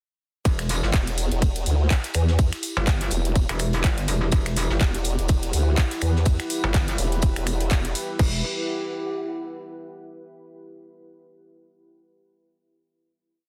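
Bass house at 124 BPM in E minor with a gritty, swaggering swing, built on a tight, up-front four-on-the-floor electronic kick, a garage kit of metallic programmed hats, snaps, claps, ride and crash, and a background acoustic studio kit playing an edited, rolled-off looped breakbeat with snare and tambourine, while a bright, saturated metallic wobble bass and a detuned, formant-filtered wobble bass drive modulated phrases with changing wobble speed, a lo-fi, warbling tape-like pad drifts through slowly shifting chords, and a deep, moody ambient pad enters at 5.2 seconds before the drop gives way at 8.2 seconds to a final chord that rings out until 10.1 seconds.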